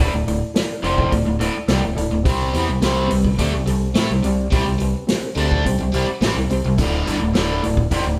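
This classic rock clip, cut from a longer piece, moves with a confident, driving energy in a straight 4/4 feel, as if the band were playing live together in a stone room with a moderate reverb. Two overdriven guitars carry the riff: a raw garage guitar that sits up front with a bright, picked edge, and a biting guitar with a phaser tucked in the background. A growling fingered electric bass adds punchy, overdriven weight underneath, and a vintage acoustic drum kit enters at 0.3 s with a punchy kick, medium-tuned snare, hi-hat and a rolled-off top. A reedy electric piano with medium tremolo supplies clean accompaniment, stepping forward with a fill from 5.1 s to 6.8 s. The harmony shifts from Dsus2 to C5 and back to Dsus2, keeping the groove firm and insistent.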